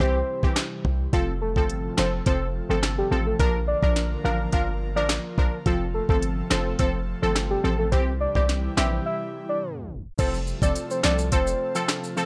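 Dancehall at 106 BPM in F major, this summery, sunny clip from a longer piece moves through a simple F, Bb and C progression in a straight four-four. An electronic afro-pop drum kit sits up front with a knocking kick, sharp snare, smooth hi-hats, rim clicks and crash cymbal, all coloured by vintage 12-bit sampler grit, while a hard-hitting 808-style bass adds punchy, heavy low end with a fast attack and decaying tail. Over this, a soft octave-layered synth lead carries the melody with a full, round, mellow tone, chorus, vibrato and tape echo, and brassy, detuned synth stabs brighten the accompaniment with a filter sweep. An airy, breathy pad holds sustained chords in the background, its sidechain pumping giving the groove a gentle breathing motion. A break arrives at 9.1 seconds with a tape stop before the music resumes at 10.2 seconds, when acoustic maracas join for the closing bars in a dry, close mix with a soft, rolled-off top end.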